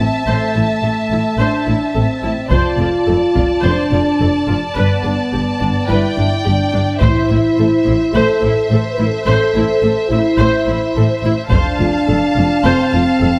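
Cinematic, epic orchestral film score with a heroic, dark mood, in which roomy French horns hold sustained chords over an expressive cello and double bass foundation while a focused violin section carries the melody above a lush, distant second violin line and soft-attack violas, and close, dry taiko hits land at 2.5, 7.0 and 11.5 seconds, the middle one joined by a round, very quiet timpani note.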